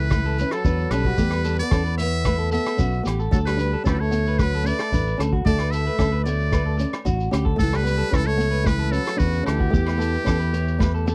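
A muted trumpet leads this joyful, danceable highlife guitar band excerpt, its brilliant, buzzy metal-mute tone carrying the melody with light vibrato and scooped notes in a close-miked pop style. Beneath it, a breathy alto saxophone plays a mellow second line in a jazz manner, while a clean, twangy electric guitar picks arpeggios through spring reverb and slapback echo, and a small nylon-string guitar fingerpicks accompaniment in the background. A round, up-front fingered electric bass anchors the groove at a straight 112 BPM in D major, joined from 0.1 seconds by a tight soul drum kit with a medium-tuned snare, rim clicks, toms and a rolled-off top. A grainy shekere sits in the background and ringing agogo bells stay very quiet, adding texture to the steady 4/4 pulse. The chords move through A/C#, E5, D5 and Em. The dry, close 1970s-style studio sound keeps every part present, and a drum fill at 10.8 seconds closes the passage.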